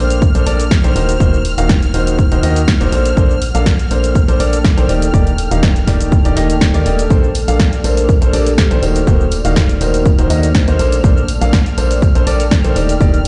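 A warm grand piano riff with audible action noise opens this feel-good piano house excerpt, riding over a hollow, organ-like FM bass, a silky analog string pad and a deep, moody ambient pad, all pumping against an overdriven, punchy electronic kick and a punchy analog drum machine of hi-hat, shaker and snare. Around 7.1 seconds a very quiet, close tambourine joins, and from 7.8 to 10.8 seconds a metallic, ringing vibraphone with slow motor vibrato adds a brief melody in the background. The joyful swung groove cycles through lush major-ninth and minor-sixth chords, bathed in a large studio reverb and a dull, bare-room ambience.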